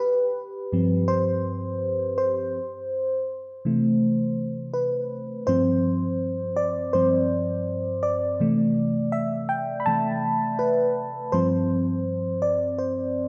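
This smooth, romantic R&B fragment rests on a swung sixteenth-note feel, with a mellow FM electric piano playing alone throughout, its round, dark tone sitting up front and colored by chorus and phaser. The keys move between G7sus4 and C6 before a second passage begins at 5.5 seconds, circling through G7sus4 and C69 until the cut at 13.3 seconds. A moderate scoring-stage reverb lends the piano's fast-attack, decaying notes a soft sense of space.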